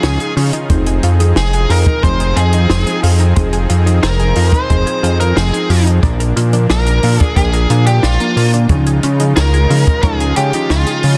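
A fat, wave-folded analog bass sits up front in this nostalgic, cinematic 90 BPM synthwave excerpt in F minor, with a dark, overdriven lead guitar carrying the melody through tape echo, a soft FM synth bell tracing a pure second line, a smooth supersaw pumping sustained chords over Dbadd9, Fm7 and Bb, a round analog pluck spinning chorused arpeggios, a mellow FM electric piano adding phased stabs, a dry cocktail kit with a high-tuned snare and hi-hat, and a punchy acoustic kick from 0.7 to 10.2 seconds, all in light small-room ambience under a dense, heavily limited master.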